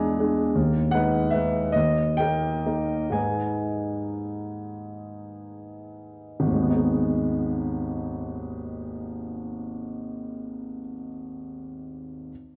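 This is a romantic classical nocturne for solo piano, a short fragment of about 12.3 seconds cut from a longer piece, in G# minor with tuning set to A4 = 441 Hz. The mood is yearning and wistful, moving in a slow, rubato 6/8 at roughly 32 to 55 BPM counted in dotted quarters, and the pace slows through the opening 6.4 seconds before a new section begins. A warm concert grand carries everything alone, sitting up front with a deep bass and spanning from G#1 up to A#5. The harmony passes from E7 to G#m over D# and on to D# before settling on G#m at 3.2 seconds. A moderate concert hall reverb with a 1.9-second decay surrounds the piano, while the sound of worn, old cassette tape adds a warbly pitch drift to the recording.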